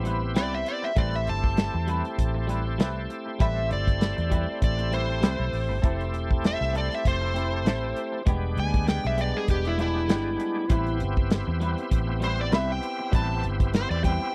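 Soulful and smoky, this cut from a longer soul blues piece rides a straight-eighth groove with a light sixteenth swing, moving through Am9, Fmaj7 and E7#9 before returning to Am9 at 10.7 seconds. An overdriven slide guitar carries the solo up front from 0.4 seconds, over a dark, rolled-off soul drum kit with a tight kick and a round, foam-muted fingered bass. A shouting tonewheel organ with key click, light overdrive, chorus vibrato and slow rotary speaker fills the accompaniment, while a twangy, compressed clean guitar adds picked stabs through analog chorus in the background of a dry, close 1970s-style small room.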